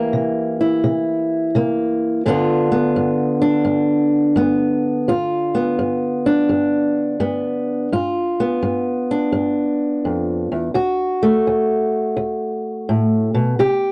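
Swaggering and gritty, this fragment of a swung 85 BPM blues in G mixolydian features a lone fingerpicked, ladder-braced acoustic guitar, dark, woody and boxy with old strings, set up front in a dry, close 1970s-style studio sound with light reverb as it moves from C7 to G7 at 2.2 seconds and on to D at 10.8 seconds.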